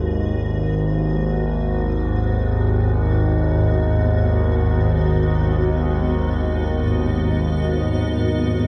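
From the first moment, a warbling analog drone with chorus sits low and up front, joined by a blurred, granular cloud pad that holds a G#m7 chord, bright and shimmering in its own reverb. This unsettling, dark ambient drone in G# minor drifts in free time through a vast, echoing cathedral space. At 1.3 seconds a very quiet, breathy, wind-like tuned noise texture enters on a single note and lingers with the other parts until this fragment of a longer piece is cut off at 8.7 seconds.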